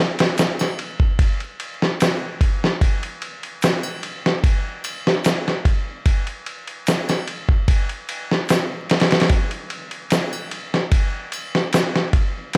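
Vinyl crackle and a light reverb frame this short trip hop clip, which is cut from a longer piece and carries a smoky, brooding mood in a straight 4/4 feel. A dusty, sampler-style soul drum kit sits up front from 0.2 seconds, its kick, snare and ride cymbal compressed and gritty, with the sound of being re-recorded in a small room. The kick lands thumpy and the snare is medium-tuned at natural pitch. Behind it, an egg shaker and triangle enter at 0.4 seconds and stay in the background, sounding acoustic and warm in their own small space. The percussion drops out at 11.9 seconds, leaving the drums to carry on alone until the clip ends at 12.6 seconds.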